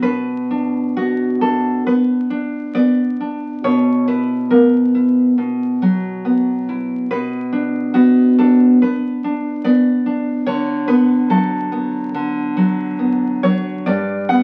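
Through the crackle of a very old 78 rpm record and a wet large-studio reverb, a solo nylon-string guitar, fingerpicked, full-bodied and up front with fresh strings, plays a nostalgic romantic classical piece in B minor at a rubato 62-73 BPM in 4/4, moving from Bm through F#7/B and Bm/D to a rootless Em7/G in this 14.4-second passage cut from a longer work.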